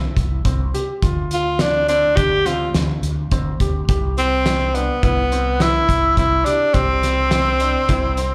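A straight, uneven five-beats-to-the-bar pulse drives this bright progressive instrumental, cut from a longer piece and heard as a live gig through a club's PA with light reverb and small-room ambience. A round, dark fretless electric bass with analog chorus starts at 0.0 seconds. A loose indie drum kit joins at 0.2 seconds with a punchy kick, fat snare and hi-hat, its gritty, saturated sound pumping with the room and rolled off at the top. A baby grand piano plays arpeggios, sitting lower in the mix with a slapback echo and a warm, present tone. The clear tenor saxophone enters at 1.3 seconds carrying the melody, up front in a pop solo style with light vibrato, while the harmony moves from C5 to Dm7 and back to C5, keeping the mood driving.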